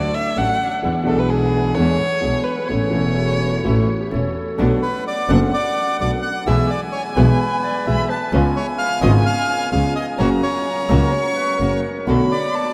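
A reedy, up-front bandoneon takes the melody from 4.8 s in this tense, passionate tango excerpt with a rubato feel, after a distant, expressive bowed violin with vibrato and portamento solos over the opening above a concert grand piano with deep bass and long sustain, a biting, earthy bowed double bass and very quiet gut-string chamber string stabs, joined at 3.2 s by a mellow clarinet in the background, all set in the huge reverb of a vast, echoing space.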